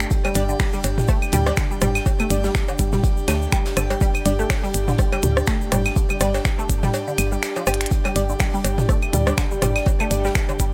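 This excerpt of sparse, cool minimal techno has a light reverb and a pumping, sidechained pulse at 123 BPM in 4/4, with a gentle 16th-note swing and a G5 chord. An up-front electronic kick, deep and re-recorded in a large room, drives it alongside a woody, round FM bass sitting between G1 and D2. A juicy, squelchy resonant blip pluck carries the riff through phaser, ensemble chorus and dub echo. Crisp, detuned wavetable chord stabs with delay punctuate the groove, while an airy, breathy pad adds a bright, chorused layer above. The percussion blends clicky finger snaps and hats from a minimal electronic kit, overdriven claves, cowbell, rim click and toms with delay, a grainy egg shaker, and a distant acoustic kit of hi-hat and snare in a stone room. The kick drops out from 6.9 to 7.9 seconds around a drum fill at 7.7 seconds, and a very quiet bubbling stepped-filter texture creeps in at 8.5 seconds.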